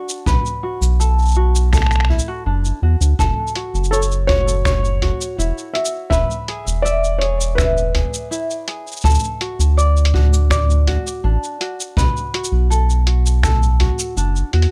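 Intimate and wistful, this 82 BPM folktronica excerpt in straight 4/4 sets light, fingerpicked tenor ukulele arpeggios, softened by a low-pass filter and digital delay, over a muffled, pitched-down sampler-style kit of finger snaps, hi-hat and shaker, a distant, boomy brushed kick and a deep, round, detuned analog bass sitting up front, while a felt-muted upright piano carries a mellow melody with 12-bit grit and audible action noise from 3.9 to 8.3 seconds, all moving through Bm7, F#m7, E and D before a drum fill at 14.5 seconds.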